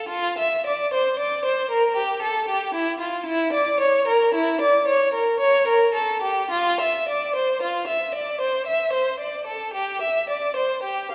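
Classical, baroque-style suite movement for unaccompanied violin, heard here as a short cut from a longer piece. The mood is serene yet dance-like, moving at a slow 56 BPM in 3/4 with a flexible, rubato feel, and the music settles into D minor from 3.3 seconds. A single bowed violin carries the whole passage alone from 0.0 to 11.1 seconds, ranging from E4 to F5 with a rich, focused tone and vibrato. The instrument sits up front, yet the listening position feels further back in a recital hall, whose generous reverb lets each note bloom and linger. The effect is intimate and poised, a lone voice tracing an unhurried dance through a resonant space.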